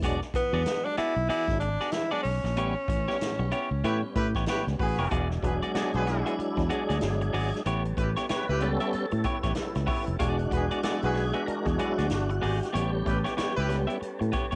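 A gritty, lo-fi home cassette sound with light reverb and studio ambience frames this playful funk excerpt at 94 BPM in E mixolydian, swinging on the sixteenths over E9 and A9 chords. A round, dark fingered bass with tube saturation sits up front beside distant, roomy big-band drums with a boomy kick, while a clean, scooped electric guitar comps and an overdriven tonewheel organ with chorus vibrato and slow rotary speaker jabs out stabs. A bright, close-miked tenor saxophone carries the melody from 0.4 to 4.4 s, a warm horn section adds a second line from 3.8 s during a band accent, and from 5.1 s a smooth second organ holds sustained chords in the background during an organ solo.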